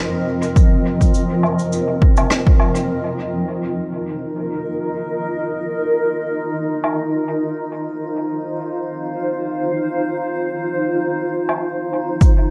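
Drifting in free time, this deep, hazy ambient dub excerpt opens with a cloudy granular pad sustaining an F7sus4 chord, joined moments later by a punchy, overdriven electronic kick up front. Cabasa, woodblock and rim click sound through dub echo with a rolled-off top, all inside a moderate echo-chamber reverb. By 2.9 seconds the drums have dropped out, leaving the blurred, slowly evolving pad on an F5 chord. A brief percussion flicker breaks the calm at 6.8 seconds, the percussion returns at 11.5 seconds, and the kick comes back at 12.2 seconds.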